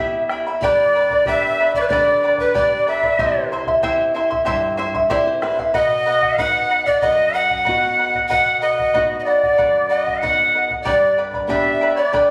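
Andean folk at 94 BPM in 4/4 with an earthy, melancholic mood, this excerpt from a longer piece is led by an airy wooden pan flute, close-miked and up front with vibrato, soft attack and a slapback echo, while a distant, straight-toned cane quena carries a tongued second line in the same register. A shimmering, fingerpicked charango with double strings sits up front beside a softer fingerpicked flamenco guitar that adds a brief fill from 4.5 to 5.7 seconds, and a deep, dark, dry bombo enters at 0.3 seconds. The harmony moves from E minor through G, C and B before returning to G, all captured on a phone in the room with light studio reverb and compression.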